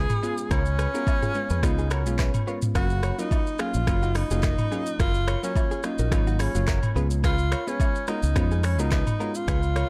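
A breathy, whispered tenor saxophone with vibrato and tape echo sings an intimate jazz-style melody over a crystalline wavetable pluck with chorus, a clean, direct-recorded electric guitar riff in the background and a bright, up-front fingered electric bass, joined at 0.1 s by an electronic afro-pop kit with deep kick, crisp hats, finger snaps, handclaps, rim clicks, shaker and toms, plus background agogo bells and woodblock, in a sunny, romantic afrobeats excerpt at 107 BPM in F# major that moves from C#7 to F#maj7 and back under dark, ambient production.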